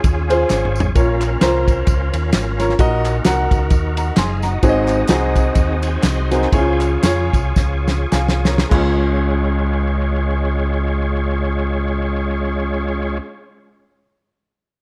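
A light reverb gives this uptempo gospel passage, cut from a longer piece, a hopeful and reverent glow in Db major, moving in a swung 4/4 at 98-131 BPM. An overdriven tonewheel organ holds thick, gritty chords through a fast rotary speaker with chorus vibrato and audible key click, opening with a short fill. Beneath it, a fingered electric bass through an envelope filter sits round, punchy and up front, while a woody, polished upright piano enters almost at once to fill out the accompaniment. The soul drum kit has a fat snare, tight kick and dark, rolled-off cymbals in a pumping room, with tambourine and group handclaps in the background. The progression runs from Db through Bbm, Ebm/Bb and Ab7 back to Db as the tempo slows from 4.6 seconds, and a drum fill leads into a new section at 8.7 seconds. The drums and hand percussion stop around 8.9 seconds, leaving organ, bass and piano to carry the close.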